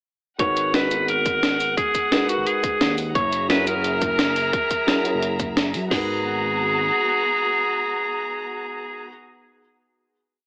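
A soulful, rolling liquid drum and bass piece at 174 BPM in G# minor opens straight into its drop, with a bright, punchy alto saxophone carrying a motif-based melody through digital delay. Beneath it sit felt-muted upright piano chord stabs with audible action noise, sustained chamber strings pumping under sidechain, and a smooth sawtooth synth bass playing a dub-style line. Two drum kits drive it: a tight electronic garage kit with cracking snare and crash, and a gritty, pitched-up jungle sampler-style kit of cabasa, hi-hat and snare placed up front. The sampler kit drops out at 5.8 s and the garage kit at 6.0 s, and the bass stops at 6.9 s as saxophone, piano and strings carry on over a final G#m9 chord, the mix framed by light reverb and an AM radio sound.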